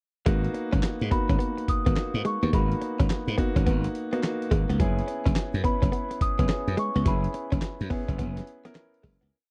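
A growly, bouncy slap bass and a gritty, hard-swung sampler-style drum kit with a thumpy kick and clap-layered snare drive this slick, punchy new jack swing R&B piece at 106 BPM in G# minor, as clear grand piano plays syncopated rootless chord stabs with audible action noise, a clean, compressed electric guitar with subtle chorus picks a muted single-note riff, and a delicate, bell-like celesta sings motifs from 1.1 s over G#m7 and F#7sus4 in a dry, close 1970s-style sound before the fade-out from 7.1 s.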